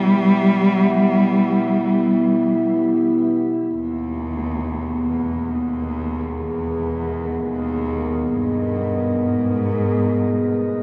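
Unmetered and drifting in free time, this ambient passage, cut from a longer piece, sits in G# harmonic minor with tuning at A4 = 438 Hz, and its mood is desolate and unsettling. A dark analog pad holds sustained chords throughout, its detuned sawtooth and square layers, sub octave and wave-folded edge thickened by lush chorus and shimmer reverb, with a slow attack and long release. Beneath it, a single bowed cello carries the melody in its low register, nasal and boxy in tone, with expressive vibrato and portamento, set in shimmer reverb and a diffuse ambient delay. Both parts sit up front, yet a cathedral reverb places them in a vast, echoing space. The harmony moves from Em to G#madd9 at 3.7 s, a shift that deepens the unease before the pad stops at 10.8 s.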